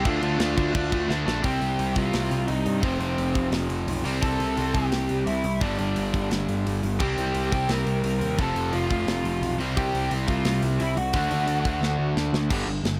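The double-tracked stack guitar sits up front in this aggressive, urgent punk rock excerpt, driving a bright, overdriven picked riff at 173 BPM in a straight 4/4. Beneath it, a fuzz-drenched electric bass adds a growly low end, while a lead guitar through a small cranked amp carries the melody with a lo-fi, overdriven edge and a touch of delay. A tight metal drum kit with a medium-tuned snare, tight kick, hi-hat and crash plays a short fill that leads the band into a half-time feel at 1.4 seconds. The harmony moves restlessly through Dm, Cm, F5, C, G5, C5, F and C5 before landing on D, with a second drum fill at 11.8 seconds pushing toward the cut. The dry, close sound keeps every part raw and immediate.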